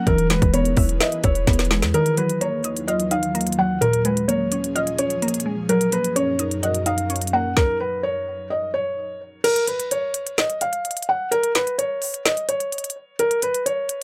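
Hip hop in a dark, hard-hitting trap style at 128 BPM with a half-time feel in Eb minor, this excerpt pairs a soft, felt-muted upright piano melody up front with a glassy, chorused wavetable pluck, an ethereal pad carrying its own built-in reverb, and a boomy sine 808 bass that sounds only until 1.9 seconds. An up-front trap kit drives it with a hard-clipped kick, woody snare, crisp hats and crash, and a fill leads into chords moving through Ebmadd9, Bbm7 and Gb6. The pluck and pad fall away by 7.6 seconds, giving way to a break, and from 9.4 seconds the piano carries on over the drums with the kick muted, all under light reverb.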